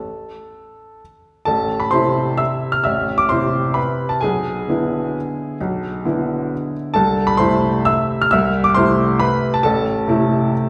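Classical piano waltz in 3/4, elegant and bittersweet, played with a flexible rubato feel on a solo upright piano that spans A1 to F6 across this short passage cut from a longer piece. The instrument sounds woody and intimate, with audible action noise and long sustain, while a wet recital hall reverb places the listener further back in the room. After a brief opening on an A5 chord, a new section begins at 1.5 seconds and carries the piano through to 10.7 seconds.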